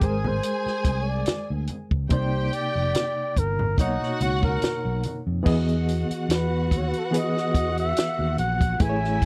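A gently swung sixteenth-note groove from a dry cocktail drum kit with a tight kick, dark cymbals and a high-tuned snare, a round, amped fingered electric bass and very quiet, bright congas that drop out at 5.3 s carries this smooth, lush 1970s-style soul excerpt, as a mellow, breathy flugelhorn solos with scooped notes over a reedy, worn, slightly out-of-tune electric piano shimmering with fast tremolo and a bowed studio string section adding an expressive vibrato second line, all captured close in an intimate, nearly reverb-free studio sound.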